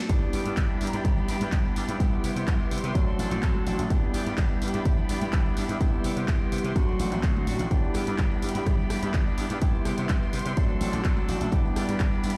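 Funky and feel-good, this filtered disco house excerpt moves at 126 BPM in a straight 4/4 groove in G major, cycling through G6, Cmaj7 and D7 for its full 12.4 seconds. A punchy, layered electronic kick sits up front, joined by a tape-warm analog drum machine supplying handclaps, rim clicks and hi-hats, with sidechain pumping on the hats, while very quiet tambourine and congas add close, dry acoustic colour. A gritty, overdriven slap bass drives the low end with a bright, direct and amped tone. On top, a barky overdriven tine electric piano played through a combo amp carries the chords with phaser, and a clean, picked, scooped electric guitar plays a riff. In the background, a dark, lush studio violin section holds bowed chords with vibrato, portamento and soft attacks. The piano, guitar, violins and bass pump against the kick and sit under a low-pass filter, and the mix sounds as if played on a big sound system in a bare stone room with light reverb.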